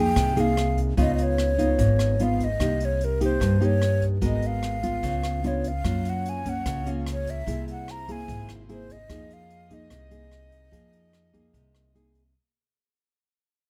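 Close, detailed microphones and little reverb give this melancholic, intimate bossa nova in F minor an up-front feel, and the whole cut fades out across its brief length, taken from a longer piece. At 148 BPM in a straight 4/4, a breathy, hollow concert flute carries the melody with a soft attack and straight tone, sitting near the listener. Beside it, a thumb-plucked classical nylon-string guitar supplies the accompaniment, while a woody pizzicato upright bass anchors the low end. A jazz kit played with brushes adds hi-hat, rim click and a boomy kick, sounding as if set in a small room. At 5.8 seconds a distant, floating chamber string section enters with soft bowed chords in the background, as the harmony moves through rich colours such as Fm11, Db7b9, Gbmaj7 and Caug7 before settling on Fm7.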